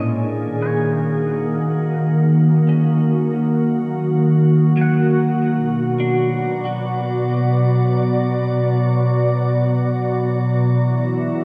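Ambient music in free time, serene and luminous, drawn from a longer piece. A glassy, ethereal FM pad sits up front with slow-attack sustained chords that carry a dark shade, thickened by ensemble chorus and its own reverb. Beneath it, a calm, organ-like sine drone holds steady in the background with the same chorus and a long release, gradually fading in. A clean electric guitar, picked and twangy with a compressed, scooped tone, enters at 0.6 seconds with soft arpeggios set back in the mix, bathed in spring reverb and a diffuse ambient delay. The harmony drifts from D#m to Bm and finally to E, all inside a lush hall reverb and the worn, warbling pitch drift of old cassette tape.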